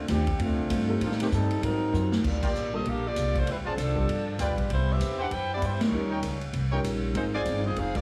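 A punchy, tight trombone section opens this dramatic big band swing excerpt in G minor at 196 BPM, taking the lead over woody, thumpy pizzicato upright bass and a natural-sounding drum kit with a punchy kick until a drum fill hands off at 2.2 seconds. The saxophone section then takes the melody with vibrato and a soft attack, while the trumpet section adds warm stabs and the band hits accents at 2.4 and 5.8 seconds. A dark, slightly detuned upright piano with audible action noise comps alongside a clean, picked hollow-body electric guitar in the background, all heavily compressed into a radio-like sound with moderate studio reverb.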